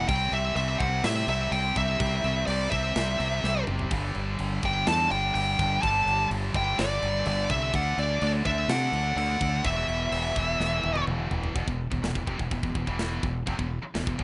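A half-time 4/4 feel at 126 BPM drives this heavy, epic heavy metal excerpt in E minor, tuned to A4 = 438 Hz, with drum fills breaking the pulse before the groove opens out of half time at 11.6 s over a C, G5, D and E5 progression. A dark, distorted high-gain lead guitar sits up front with the melody until 11.0 s, while an overdriven, growling fingered electric bass also pushes forward. Beneath them, two bright, scooped high-gain guitars and a quieter double-tracked tight distorted guitar pick the riff, and a gritty, saturated acoustic kit with bright cymbals, china and crash, medium-tuned snare, tight kick and toms hammers beneath, all in a rough home demo mix with small room ambience and a top end that stops at 10.9 kHz.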